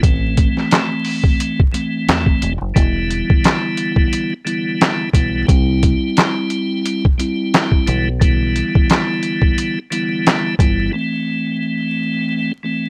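Gritty, pitched-down sampler drums with a thumpy kick, medium-tuned snare, handclaps and hi-hat drive this dark, reflective boom-bap hip-hop fragment alongside a round, punchy fingered electric bass and an up-front, piping tonewheel organ with key click, slow rotary speaker and cassette-tape filtering, until the drums and bass drop out around 10.9 seconds and leave the organ alone over a dry, crackling vinyl backdrop.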